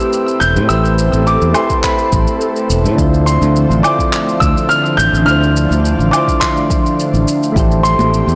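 Wistful and relaxed, this short sunset chillout excerpt at 105 BPM sets a clear, intimate grand piano melody with audible action noise, high in its range and trailed by digital delay and shimmer reverb, over soft, mellow electric-piano-like synth keys and an airy, breathy pad with chorus and phaser, moving from Am9 to Dm7 at 3.0 s and Am7 at 7.6 s. A dark, round fingered electric bass sits up front, while overdriven electronic shaker, woodblock and handclaps run throughout and a deep, layered electronic kick drum enters at 1.7 s, with ringing, hard-handed congas appearing briefly in the background at 8.0 s. The whole recording is blown-out and overdriven, washed in a wet recital hall reverb.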